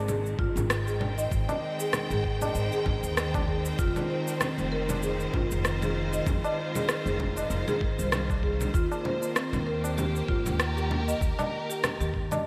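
Strings and upright bass open this mystical, hypnotic stretch of organic downtempo together, the bowed ensemble holding smooth, vibrato-laden chords over the bass's pizzicato lines in F minor. Within a fraction of a second a marimba struck with medium mallets joins with rosewood-toned arpeggios trailed by digital delay, while the string chords carry a sidechain pumping. Layered electronic congas, cabasa and rim click set a 97 BPM groove in 4/4 with a light swing on the sixteenths, and from 0.4 seconds a gritty, thumpy sampled kick drum anchors the beat, joined by a low-tuned, dry tabla tucked into the background. The harmony drifts from Abmaj7 to Fm7 and settles on Eb near the close. A lush hall reverb and a bright, 1980s-style digital sheen frame the woody bass and focused strings, and the passage is cut from a longer piece.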